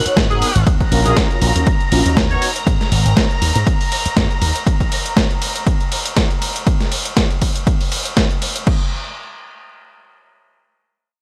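A swung sixteenth-note groove in 4/4 drives this sensual, groovy slice of filtered disco house, built on a punchy, overdriven electronic kick and a compressed sampler-style kit whose snare, hi-hat, ride and crash run until 8.8 s, with its hats and cymbals pumping. Up front, a bright, amped slap bass with an envelope filter plays under Abm7 and Ebm7 chords, while a mellow, detuned synth brass and a distant, roomy horn section carrying the melody both drop out at 2.5 s. Above them a lush vintage string machine sustains phased, chorused chords with 12-bit sampler grit until 6.7 s, in a dry, gritty hardware mix.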